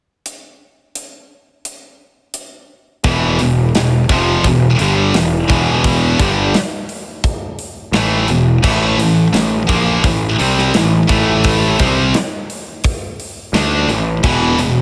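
The recording sits in a small room, giving this aggressive, epic heavy metal excerpt a close, compact sound. A tight acoustic drum kit opens alone at 0.3 seconds, with a mid-forward, up-front tone, a medium-tuned snare, a tight kick, hi-hat and crash cymbals that ring bright. At 3.0 seconds two distorted, picked electric guitars come in together on the riff: one heavy and high-gain, the other tight and a touch louder. A fuzzy, growly electric bass joins them at the same moment, overdriven and placed up front. Over a steady straight feel, the riff moves from an open start to E minor, then to A5, and comes to rest on E5.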